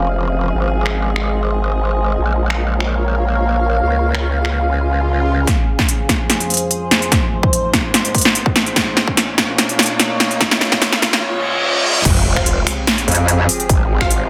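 A growling, saturated bass anchors this heavy, aggressive half-time wobble dubstep excerpt at 146 BPM in F minor, over a morphing, detuned wavetable pad with sidechain pumping and a punchy, crisp big-room dance kit. Background risers enter at 4.8 seconds, joined from 5.5 seconds by a tape-warm electronic kick and later a reverse cymbal, building toward a drop at 12.1 seconds. There the growl returns with bold orchestra-hit-like stabs soaked in dub echo and a brief burst of metallic, distorted wobble bass.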